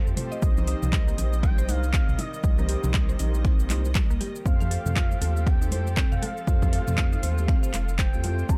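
A dark, warm production set in digital ambience opens this driving, earthy afro house excerpt at 119 BPM, with a 16th-note swing giving the 4/4 groove its lilt. An overdriven, punchy electronic kick sits up front from 0.4 seconds alongside a round analog bass that is deep and sustained, while an afro-pop kit adds metallic hats, cabasa, finger snaps, handclaps and toms, and ringing congas played with soft hands sit in the background. A woody, mallet-like FM pluck plays arpeggios in the background with chorus, tape echo and a cassette-tape tint, and a mellow synth brass fires detuned sawtooth stabs with vibrato and a filter sweep. A rich string section holds smooth, bowed chords in the background, and several of these parts pump with the sidechain. Above it all, an expressive, nasal synth lead sings a melody between Eb5 and Bb5, bathed in lush chorus and tape echo, as the harmony moves from Cm7 to Fadd9 at 4.5 seconds.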